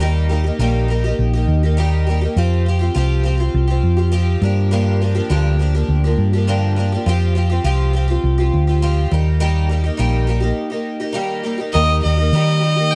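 In a dark, warm small-room sound, this nostalgic folk rock and heartland rock fragment at 102 BPM sets a bright, shimmering picked twelve-string acoustic guitar with subtle chorus over a round, punchy hollow-body short-scale electric bass through Eb, Fsus2 and Gm7, and after a break at 10.6 seconds a clear, nasal violin with light vibrato and an airy bow enters at 11.7 seconds to carry the melody.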